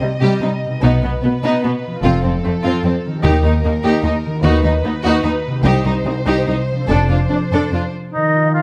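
Soaring and adventurous, this short excerpt from a heroic adventure film score moves at 148 BPM in 3/4, building through its opening section as a lush violin section carries the melody over a second violin line, smooth, distant violas and ringing harp arpeggios in the background, with an expressive cello section using portamento and a bright double bass section, entering at 0.8 seconds, anchoring the bass. A very quiet timpani stroke sounds on Eb3 at 3.2 seconds, the harmony passes from C minor through F and E-flat, and near the close a pure silver flute and a soft-attack oboe take up a second line, joined at 8.2 seconds by mellow French horns holding Eb3. The sound is close and detailed with light reverb, the winds and horns up front.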